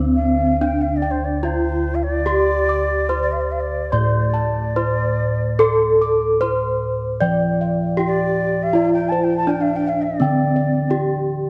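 A bronze metallophone carries the melody from the start, its paired tuning giving a shimmering, ringing beat under a wooden mallet, while bright, up-front bossed gongs play arpeggios above and soft bossed gongs struck with padded beaters hold the bass, and from 0.1 s a distant, airy bamboo bansuri with vibrato adds a second line, shaping a serene Javanese gamelan passage in D slendro at 72-88 BPM in 4/4, set in a moderate concert-hall reverb.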